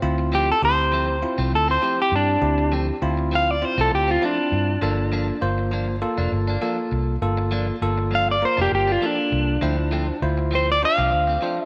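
A lightly swung 4/4 groove carries this brooding, soulful blues fragment over Dm7, Gm7 and back to Dm7, where a round, foam-muted vintage bass sits up front beneath bell-like tine electric piano chords and compressed, scooped stabs from a clean electric guitar with subtle chorus, while a dark, slightly broken-up electric guitar leads the melody, all set in a moderate echo-chamber reverb.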